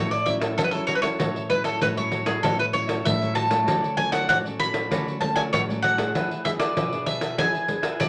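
A straight, even samba-and-choro groove in 4/4 is set by a jingly pandeiro, played with hard hands up front in a live-sounding room, entering at 0.1 s. Over it, a bright, picked bowl-back mandolin carries the playful, sunny melody, its doubled strings ringing clearly near the top of the mix. Further back, a crisp cavaquinho adds picked accompaniment, while a full-bodied, classical nylon-string guitar fingerpicks the lower harmony, with finger squeak audible. The harmony moves from A6 to Dmaj7 at 3.7 s and on to E7 at 6.1 s, all within a single section of moderate studio ambience. This short passage is cut from a longer piece.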